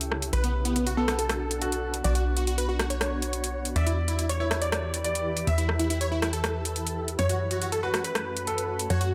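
A lightly reverberant mix carries this emotional, soaring uplifting trance passage in B minor at 140 BPM, where punchy detuned supersaw stabs with tape echo and a very quiet lush unison pluck enter at 0.3 s over an up-front funky analog bass, overdriven big-room drums with metallic hats and rim clicks, a shimmering, ethereal pad under a filter sweep, and an intimate baby grand piano with audible action noise and dub echo, all moving from Bm to Em and F#m.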